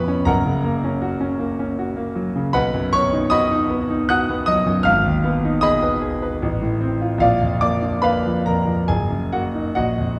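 A lush recital-hall reverb, with a decay of about 1.8 seconds, surrounds this recording, which is heard from further back in the room. It is a roughly ten-second portion of a longer romantic character piece for solo piano in Eb minor. The concert grand has a clear, slightly vintage tone with a deep bass and a short sustain, and its playing spans from Gb1 up to F#6. Moving in 3/4 with a rubato feel, the tempo drifts between 66 and 81 BPM, giving the music a bittersweet, passionate character. The harmony passes from Gb through B and Abm, then leans on F7/A and Bb before settling on Ebm/Gb near 8.9 seconds.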